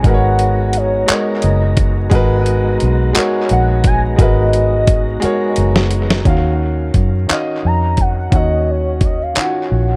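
Drenched in digital ambience and echo, this sultry, yearning slow six-eight R&B excerpt in Eb minor at 58 BPM sets a velvety synth lead with chorus, tremolo and dub echo over a clear, intimate grand piano with audible action noise, a smooth tonewheel organ on slow rotary speaker in the background until 6.2 seconds, a gritty, compressed sampler-style soul drum kit with handclaps, hi-hat, thumpy kick and snare that plays a fill from 5.2 seconds, and a dark, round, foam-muted fingered electric bass, as the harmony moves from Abm9 to Ebm9 at 6.3 seconds.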